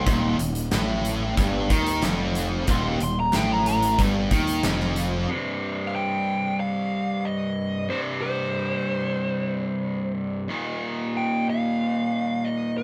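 A straight 4/4 pulse at 92 BPM drives this swaggering, brooding classic rock passage in C dorian, anchored by a big, polished acoustic drum kit with a fat snare, punchy kick and hi-hat, a growly fuzz fingered bass up front, and very quiet, crisp group handclaps. A dark, smooth overdriven lead guitar solos over riffs from a bright, up-front semi-hollow guitar, a double-tracked overdriven electric guitar and a tight distorted guitar set in the background, with the band playing live in one room under moderate reverb. By 5.3 s the drums, bass, claps and two riff guitars have dropped away, leaving the lead melody over the semi-hollow guitar until 12.8 s.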